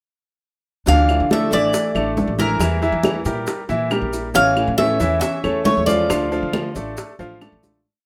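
A studio sound with moderate reverb frames this Cuban son and guajira piece in D harmonic minor, moving at 138 BPM in a straight 4/4 with a nostalgic, sultry mood. Up front, a metallic, double-strung Cuban tres picks a motif-based melody of call phrases from 0.9 seconds, some strings doubled at the octave. Behind it, one fingerpicked nylon-string guitar traces a classical harmony line mostly in thirds, while a second, darker and smaller nylon-string guitar strums with muted slaps. A brilliant grand piano plays a montuno in octaves with long sustain and audible action noise, and a thumpy gut-strung upright bass plucks a syncopated figure. In the background, ringing congas with slaps and open strokes and tight high-tuned bongos in steady eighths with hand bell join grainy maracas and woody, band-limited claves on a two-bar time line to carry the groove over Dmadd9, Edim, A and Dm, before the music fades out from 6.1 to 7.8 seconds.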